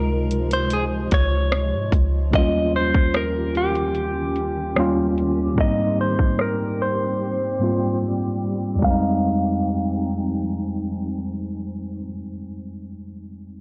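A straight 74 BPM trap kit with a hard-clipped kick, bright hats and overdriven 12-bit sampler grit drives this moody, late-night contemporary R&B excerpt in F minor, as a round, sine-like 808 bass sounds only until 2.3 seconds, a worn, slightly out-of-tune tine electric piano carries lightly overdriven accompaniment, a clean, compressed, direct-recorded electric guitar plays the melody through spring reverb, and a cloudy granular pad blurs sustained chords with sidechain pumping beneath a filter sweep, before the drums drop out from 7.2 to 8.8 seconds ahead of the move to Fm7.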